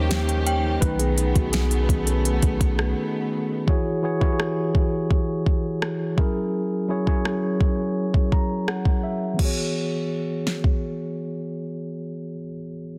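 Dry, dense and heavily limited, this dreamy, tender contemporary R&B excerpt moves at 84 BPM in E major, led by a mellow, clean tine electric piano with a low-pass filter that plays up front until 13.0 seconds. It carries a solo passage at the start, then a filter sweep and a fill. A bowed, intimate string section with vibrato and a sul tasto softness holds sustained chords with a sidechain pump until 3.6 seconds, while a round, sine-like 808-style bass briefly rumbles beneath. A chiming, inharmonic FM synth tone warbles through chorus and tape echo in the background. An electronic, produced drum kit with a fat snare, soft kick, smooth hats, rim clicks and crash plays up front until 10.8 seconds.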